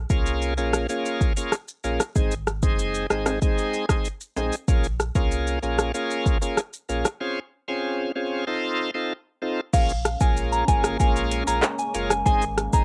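A sultry, bouncy dancehall groove in Bb minor at 95 BPM opens on a round sine sub bass, joined at once by a shouting, lightly overdriven tonewheel organ with key click and slow rotary speaker, an electronic afro-pop kit with deep kick and metallic hats up front, and dry maracas and timbales in the background, all through a lo-fi cassette sound, until a break at 7.2 seconds gives way at 9.7 seconds to a pure FM bell melody with phaser and analog delay and, from 10.1 seconds, a moody detuned sawtooth pad.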